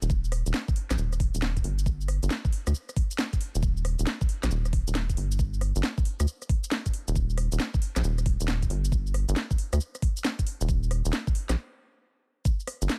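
Swung two-step garage rhythm at 136 BPM in G minor drives this moody, bouncy cut from a longer UK garage piece, where a knocking, up-front electronic kick and a garage drum kit of cracking snare, metallic hats, rim click and shaker frame a rubbery, hollow, resonant square-wave bass with a fast-attack filter pluck, all dry, with tape-warm drums, until a stop from 11.6 to 12.5 seconds.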